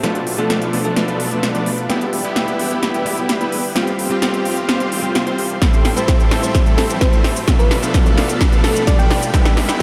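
Soaked in a dreamy, huge ambient reverb, this euphoric, powerful festival progressive house excerpt at 129 BPM builds through a continuous drum fill of crisp hats, shaker and punchy snare from a big-room dance kit, while a bright, twangy clean electric guitar with chorus, delay and sidechain pumping, a lush supersaw pad, filtered sawtooth supersaw chords, a very quiet, menacing detuned saw bass and a faint riser sit together over Bm7b5, Em, Fsus2 and Am7, a sparkling, bell-like FM electric piano melody appears at 0.4 s and returns at 6.0 s, and an up-front, tape-warm electronic kick drum joins at 5.6 s.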